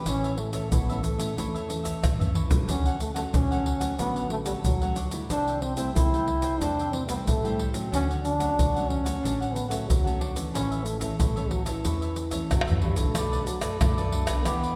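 A straight 4/4 samba-and-choro groove at 92 BPM, led by a close, dry, up-front bed of tube shaker, deep surdo, soft-handed pandeiro and tamborim with drum fills at 2.0 and 12.5 seconds, carries this playful, sunny passage cut from a longer piece, as a crisp picked cavaquinho and a classical, thumb-plucked nylon-string guitar with audible finger squeak comp through A, Dmaj7 and Am7/C, a woody pizzicato upright bass sits in the background, and a mellow, breathy, whispered trombone plays a distant, intimate jazz-style solo melody in a resonant recital-hall space, turning to Bm7 at 13.2 seconds.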